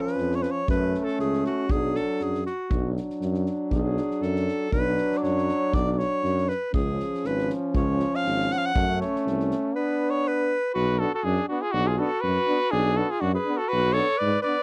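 Fiery yet bittersweet, this Balkan brass band excerpt in B dorian sharp4 moves at 119 BPM in a swung 2/4, with a clear, punchy alto saxophone soloing up front with vibrato over a mellow, soft-attacked French horn, a brilliant trombone, a present tuba bass and a soft-mallet drum kit with a fat snare and boomy kick that stops at 9.6 s, before a warm cornet with light vibrato takes the melody at 10.7 s, all captured in a dry, close 1970s-style studio sound.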